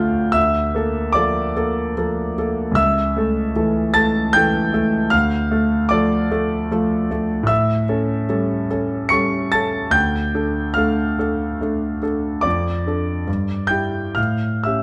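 In a flexible, rubato 3/4 that drifts between 59 and 79 BPM, this romantic nocturne for solo piano unfolds in D minor with a wistful, yearning mood. A single concert grand carries the whole 14.8-second passage, sounding intimate and natural, with a deep bass and the mechanical noise of its action audible. Its range stretches from C#2 up to C#7. The harmony opens on Bbmaj7/D and moves through A/C#, D minor, A7 and D minor again before closing on Dm/F, Em7/G and a final A7. Close, detailed microphones place the piano up front, while a moderate recital hall reverb adds a gentle sense of space, and the passage is cut from a longer piece.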